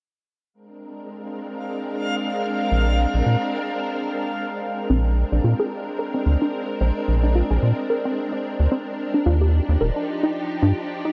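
Swung sixteenths in 4/4 give this wistful, glitchy IDM fragment a loose, lilting gait. It opens on silky string-machine chords with ensemble chorus while a reversed, granular texture swells high above, and a rubbery, hollow square bass enters up front at 2.7 seconds. After a brief break, the warbly dusty pluck arrives at 4.9 seconds with lo-fi 12-bit grit, chorus and digital delay on its arpeggios as the harmony moves from Bb9 to Ebmaj9, all under light reverb and the pitch drift of worn cassette tape.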